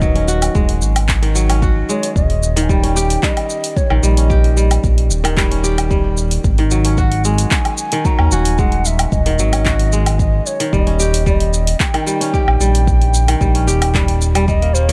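From the first beat, a bansuri, a kora, a synth bass and electronic drums sound together in this meditative, mystical organic downtempo excerpt, set at 112 BPM in a straight 4/4. The bamboo bansuri carries the melody with a breathy, mellow tone, vibrato and tongued notes, its highs rolled off and echoed by digital delay. Beneath it, a fingerpicked kora plays ringing, crisp arpeggios, roughened by vintage 12-bit sampler grit and trailed by its own digital delay. The dark synth bass, built from sawtooth and square waves, sits up front, smooth and sustained with a fast attack and gliding portamento. A deep house kit of handclaps, hi-hat, shaker and woodblock pairs with a deep, layered electronic kick, both re-recorded in a small room, and the kick drops out at 14.6 seconds. The harmony moves through D#7 and G#5 chords inside a digital ambience.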